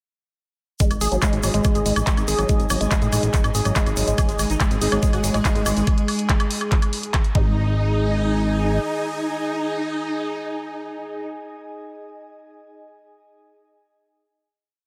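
Soaked in a lush hall reverb, this dreamy psychedelic trance piece has an alien, hypnotic mood, moving at 142 BPM in a straight 4/4. From 0.8 seconds the drop hits, with an overdriven electronic kick knocking four-on-the-floor up front, programmed closed and open hats, claps and a high woodblock from the drum kit, and a grainy tube shaker playing hand-played sixteenths quietly in the background. A thick, saturated analog bass rolls in sixteenth notes beneath a woody, wave-folded pluck with chorus and a diffuse ambient delay, whose accented acid line loops over 12 steps and drifts against the bar. A soft, breathy pad with a noise layer adds slowly shifting chords, and at 4.2 seconds a huge, compressed supersaw with phaser and tape echo brings a repeating riff over a pedal note. A bright, morphing wavetable pad holds a high note, the pads and pluck pump with sidechain, and from 7.6 seconds a final chord lingers in the reverb.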